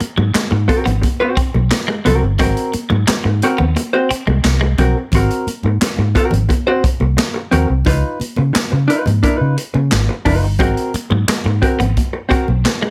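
A dry recording with little reverb catches a short, funky and energetic stretch of funk cut from a longer piece, moving at 88 BPM in a straight 4/4 in Ab mixolydian. The harmony sits on Ab9, shifts to Db9 at 7.9 seconds, and returns to Ab9 at 10.6 seconds. Up front, a vintage muted fingered electric bass lays down a dark, round, punchy line, foam-muted and amped, while an acoustic big-band drum kit with a boomy kick, medium-tuned snare, hi-hat and handclaps drives the groove with a natural studio-room tone. A vintage hollow-body jazz guitar, clean, picked and compressed with a shadowy edge, carries the accompaniment up front between C4 and C5. A semi-hollow electric guitar plays a warm, scooped riff bathed in spring reverb, dropping out after 4.9 seconds and returning near the end. Tucked in the background, high-tuned congas with thin, damped skins add a bright, saturated snap from hard hands.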